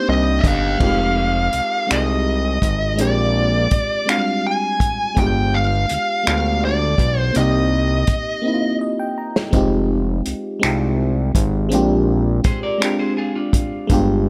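Studio ambience surrounds this sultry, late-night slow R&B piece in 6/8 at 55 BPM in F dorian, where a dark, distorted lead guitar with slapback echo carries the melody until 8.8 seconds over glassy, bell-like FM electric piano with chorus, a fat, detuned analog bass and a small-room soul drum kit with dark cymbals and finger snaps, with drum and piano fills at 8.4 seconds and a twangy, slightly broken-up second guitar line entering at 12.5 seconds.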